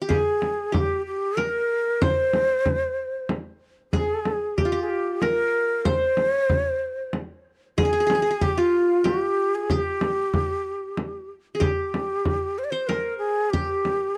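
A dry, close studio sound in a 1970s style frames this melancholic, hypnotic Arabic maqam ensemble, cut from a longer piece and set in G maqam kurd at 94 BPM in a straight 3/4. The breathy ney carries the melody up front, its end-blown reed cane tone soft in attack, expressive and shaded with vibrato. Beneath it, the qanun plays a second line, its fingerpicked triple strings giving a bright-edged acoustic glint at a lower level. A deep, large frame drum sits forward in the mix, its acoustic body compressed and saturated. The music shifts into a new section at 11.6 s before the excerpt closes at 14.2 s.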